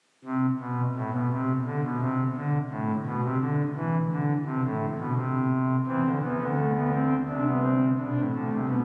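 Recorded on a phone in a cathedral-like space, the sound is bathed in a lush reverb with a 4.2-second decay. A solo pipe organ on its foundation stops, thick, romantically voiced and placed up front, plays a lively, elegant baroque-style three-part fugue in C major at 85 BPM in straight 4/4, spanning A1 to D4. After an unharmonised opening line, a new passage arrives at 5.9 seconds over C and moves to D5/C at 7.3 seconds, before this short cut from a longer piece ends at 8.8 seconds.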